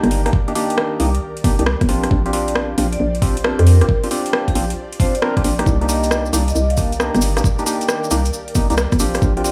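A hollow, bouncy FM bass sits up front in this moody, late-night two-step garage excerpt, its punchy, quickly decaying notes moving between G1 and F2 in C minor at 135 BPM with a swung 16th-note feel. An overdriven, knocking electronic kick enters at 0.3 seconds and joins a garage kit of metallic hi-hats and rim clicks, also driven with overdrive and placed in a studio ambience. A nasal, organ-like stab with a wave-folded edge and a noise layer punctuates the groove through chorus and dub echo, while a vibraphone played with medium mallets rings a background melody from G4 to G5, trailed by its own dub echo. Beneath it all, a very quiet, ethereal pad of detuned sawtooth and triangle voices holds slow-blooming chords that alternate between Cm7 and Bb6. A grainy, bright tube shaker arrives close at 5.7 seconds, and the whole track sits in light small-room reverb.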